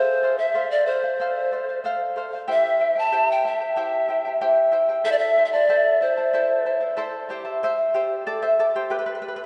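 Wistful yet festive, this Andean folk fragment sets a pure, wooden pan flute up front, with chiff, crisp attacks and expressive vibrato, over a shimmering, fingerpicked charango whose double strings ring through F, C and A minor harmony, until the flute falls away at 6.9 s and the charango carries on alone to 9.4 s, all bathed in a long, wet cathedral reverb that lends the hall-like space a softened, dark top end.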